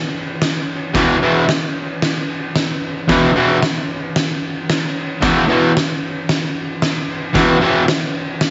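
A straight 4/4 garage-rock groove opens at 0.4 seconds on an oversized, low-tuned acoustic drum kit with a boomy kick, a fat snare and dark crash cymbal pumping in a stone room, joined at 0.9 seconds by a bright, picked, double-tracked fuzz guitar riff ranging from E2 to E3 over an E5 chord, both sitting up front in a light, small-room ambience with rolled-off highs that gives this short fragment of a longer piece a raw, swaggering attitude.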